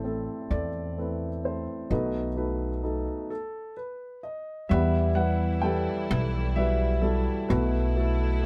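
A dark, mellow baby grand piano carries the melody over a woody, thumpy pizzicato upright bass, both up front, in this heartbroken, melancholic acoustic folk-pop ballad fragment in 6/8, and after a stop from 3.3 to 4.7 seconds an intimate chamber string section joins with soft-attack, sul tasto bowed chords and light vibrato, the band sounding live together in one room with light reverb.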